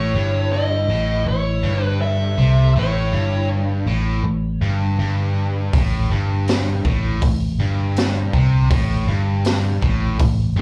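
A raunchy, gritty slice of blues rock power trio and southern rock, this excerpt moves at a steady 81 BPM in straight 4/4, centered on A mixolydian and heard as a live club gig through the venue's PA with light room reverb. A dark, smooth overdriven lead guitar carries the melody high in its range for the opening 3.5 seconds, shadowed by a second overdriven lead through a small cranked amp that sits in the background in a lower register and returns briefly at 10.6 seconds, both treated with plate reverb and slapback echo. Underneath, a biting, bright, double-tracked guitar riff with slapback echo runs low and continuous, while a vintage foam-muted picked electric bass sits up front with a round, punchy tone. At 5.7 seconds a raw garage drum kit arrives with hi-hat, a boomy kick and a medium-tuned snare, sounding saturated, distant and roomy with a rolled-off top. The result is a sweaty bar-band groove cut from a longer performance.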